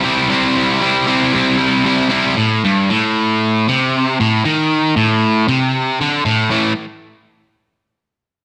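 A light reverb surrounds this brooding, gritty rock fragment in A minor at 116 BPM in a straight 4/4, where a lone distorted electric guitar, bright, scooped, compressed and double-tracked up front with slapback echo and tuned to A4 = 439 Hz, is picked between G2 and E4, moving from C to A minor at 2.4 seconds and arriving on A5 at 6.5 seconds before stopping at 6.7 seconds.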